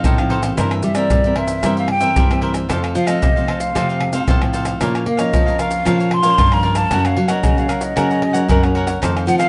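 A breathy, hollow silver concert flute opens this lively, playful samba-and-choro excerpt at 114 BPM in straight 4/4. Alongside it come a crisp, picked cavaquinho, a fingerpicked nylon-string guitar, and an up-front, close blend of maracas, deep surdo, pandeiro and tamborim played with hard hands. A second, thumb-plucked nylon-string guitar enters at 0.1 seconds to carry the bass line. The close-miked flute sings between D5 and C6 with tongued notes and vibrato, its mellow metal tone treated with slapback echo and plate reverb. The full-bodied classical guitar and the bright cavaquinho fill in the harmony as the chords move from F7/A through C7/G, F and Bbm to Gb, tuned to A4 = 442 Hz. Everything sits in a moderate, large studio room, with a top end that stops at 10.6 kHz.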